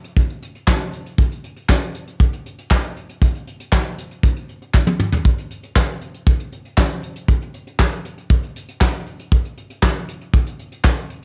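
Funk groove at 118 BPM in a straight 4/4, funky and danceable, carried by an up-front brush drum kit with a fat snare, punchy kick, hi-hat, toms and handclaps, plus a drum fill at 4.7 seconds, while a crisp group handclap sits in the background from 0.7 seconds, all captured dry on a home cassette recording with a dulled top end in this short cut from a longer piece.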